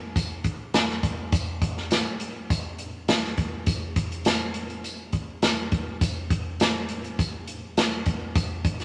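An up-front acoustic drum kit with swinging big-band character drives this short soul excerpt at 102 BPM in straight 4/4, its hi-hat, medium-tuned snare and punchy kick sounding airy and polished in a moderate studio reverb, while a jingly tambourine sits in the background from 0.2 to 8.5 seconds, giving the roughly nine-second cut an urgent, driving mood.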